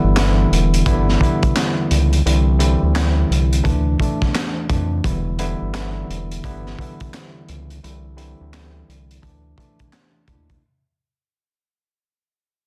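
Confident and warm, this boom-bap hip-hop excerpt rides a swung 86 BPM groove in G major, with a worn, slightly out-of-tune tine electric piano, given a cassette-tape tint and filtered at both ends, cycling through Em7, G6, Cadd9 and Dsus2 chords. A round, deep analog bass sits up front with a fast attack and sustained, evolving tone, while a crunchy, saturated breakbeat kit enters at 0.2 seconds with a tight kick, high-tuned snare, hi-hat and handclaps under a rolled-off top. The dry, dense, heavily limited mix fades out across its full 10.6 seconds.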